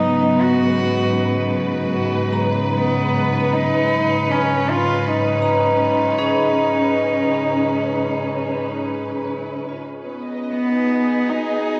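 Ambient and melancholic, this spacious excerpt moves at 78 BPM in a straight 4/4 and is cut from a longer piece. A single bowed cello carries the melody between B3 and F#4, its soft attack and pure, floating sul tasto tone sounding distant, with tape echo trailing each phrase. Beneath it, a studio string section holds lush, woody sustained chords with vibrato, close and up front, spanning G#2 to D#5. A vibraphone struck with hard mallets plays bright, metallic arpeggios that ring out over a slow motor vibrato, also fed through tape echo. The harmony rests on Badd9/G# before shifting to G#m7 at 9.7 seconds, all bathed in a wet scoring-stage reverb and the worn, warbling pitch drift of old cassette tape.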